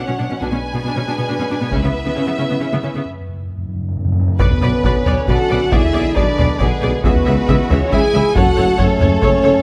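Epic and heroic, this cut from a longer cinematic orchestral score moves at 137 BPM in a straight 3/4, tuned to A4 = 438 Hz and moving through chords such as C#m7, Bmadd9 and F#m. A distant, intense violin section carries the melody over a second violin line with a smooth top, while clear violas, a rich cello section in the background and a very quiet double bass section fill out the strings, all bowed with vibrato. A soft-attacked French horn section holds sustained chords throughout, and close, dry taiko drums struck with heavy sticks enter at 1.7 seconds. The texture breaks at 3.1 seconds for an up-front timpani fill on calf heads with medium mallets. At 4.4 seconds the second section opens as a tight trombone section adds sustained chords in the background and a mellow, very quiet tuba joins the bass line, all captured with close, detailed microphones and light reverb.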